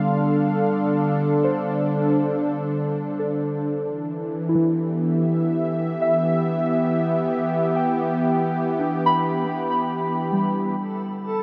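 Reflective and serene, this short ambient passage drifts at 69 BPM in a straight 4/4, cut from a longer piece and bathed in a huge, wet reverb with a long 8.6-second tail. A warm analog pad sits up front, holding smooth, detuned sawtooth chords with a slow attack and a vintage, warbling chorus, moving from Dm to Em at 3.8 s. Beneath it, muted, felt-like synth keys play intimate arpeggios whose soft, dark tone blends triangle, sine and wave-folded colors with a noise layer, each note striking quickly and then decaying into a diffuse ambient delay. Just after the harmony settles onto D5 at 10.8 s, a reversed, swelling texture rises into view at 10.9 s, a dreamy granular layer with a long release and its own reverb, carrying the passage to its close.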